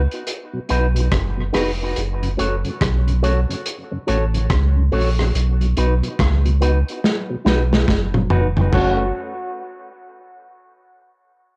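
A cassette home recording with light reverb, this short cut from a longer dub reggae piece feels spacious and deep at 71 BPM in 4/4, with a swung sixteenth-note feel in F# dorian. A round, sine-like sub bass sits up front from the very start, deep and sustained under chords moving between B and F#m. The breakbeat kit is acoustic and saturated, a gritty small-room sound with dark cymbals, a tight kick, a medium-tuned snare, rim clicks, china cymbal, hi-hat and toms, and a drum fill runs from 7.0 to 8.7 seconds. In the background a mellow tonewheel organ turns through a slow rotary speaker with chorus vibrato and dub echo, while an electric guitar through an envelope filter adds a bright, twangy, clean picked part with spring reverb and echo. At 8.7 seconds a clear trombone steps up front with a solo F#4 carrying vibrato and a smooth top, as the music moves into a new section.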